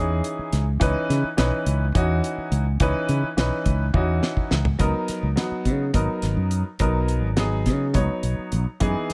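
A small room holds this short, intense stretch of electric jazz fusion, cut from a longer piece and set in a straight 7/8 at 210 BPM in eighths, in C# dorian. A clear, slightly worn grand piano voices the accompaniment over a warm, fingered electric bass, while a damped, dry 70s drum kit pushes a funky groove with a fat snare and tight kick, all three parts placed up front. The harmony sits on C#m9 until a drum fill from 3.9 s leads into a shift to C#13sus4 at 4.8 s.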